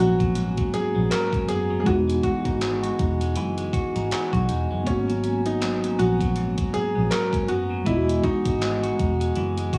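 With the lo-fi tint of a home cassette recording and light reverb, this sensual, late-night contemporary R&B fragment sets a clear, smooth concert grand piano melody, with tape colour and analog delay, over a mellow tine electric piano, compressed clean electric guitar arpeggios echoing through delay, a glassy, ethereal glass harmonica with sidechain pumping in the background, a dark, round, foam-muted electric bass, and a detuned 8-bit drum machine whose thumpy kick, hi-hat and handclaps enter at 0.2 seconds, moving on a gently swung groove between G#m11 and Emaj9.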